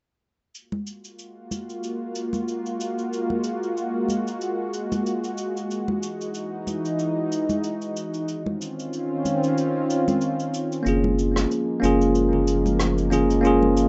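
Sunny and smooth, this sunset chillout excerpt in Gb lydian sways at 93 BPM with a light swing: brushed cabasa and rim click and close, hard-handed congas set the groove, a thick, detuned sawtooth pad with chorus settles in at 1.5 s over Gbmaj9, Emaj9 and Dbmaj9, and a bell-like tine electric piano with delay and plate reverb arrives up front at 10.8 s, joined by a deep, round analog bass at 10.9 s, in a rough home-demo mix with a dulled top end.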